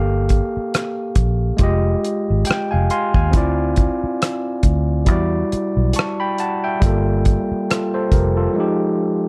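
R&B and neo-soul at a slow 69 BPM with a swung sixteenth feel, this smooth, soulful excerpt from a longer piece sets a barky, gritty overdriven tine electric piano up front with plate reverb, playing a fill from 2.0 to 3.3 seconds over minor ninth chords from Gm9 through Fm9, Dm9 and Em9, while a round, foam-muted vintage electric bass and a dry, tight-kicked 70s drum kit of hi-hat, kick and rim click, with a rolled-off top, sit in a dark production with light reverb.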